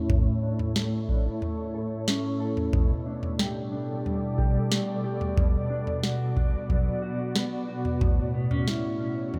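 A booming analog drum machine with a deep kick, crisp snare and toms sits up front from 0.1 seconds, driving a floating, ethereal dream pop excerpt at 91 BPM in A mixolydian, where an airy, detuned pad holds slow-attack chords through ensemble chorus, tremolo and built-in reverb, a dark, clean fingered electric guitar spins arpeggios through lush chorus and tape echo, and a filter sweep runs across the whole passage as the harmony moves from A through Gadd9/B and Bm back to A.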